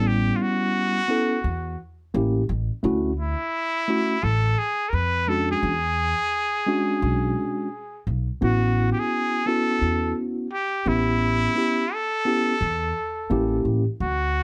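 Smooth and relaxed, this jazz-hop excerpt from a longer hip hop piece moves at 86 BPM in 4/4 with a lazy 16th-note swing, set in A major. A trumpet with a straight mute carries the solo melody from the start, its nasal, breathy tone whispered and intimate, with a soft attack and light vibrato in a jazz style. Beneath it, a mellow tine electric piano plays clean accompaniment through its built-in speakers until 13.8 seconds, while a woody, thumpy pizzicato upright bass on steel strings holds down the low end. All three parts sit up front, voiced over rich chords such as A9, Dmaj9, E13 and A6, with a fresh section beginning at 8.4 seconds. A moderate studio reverb and a dark, warm production give the whole a cozy glow.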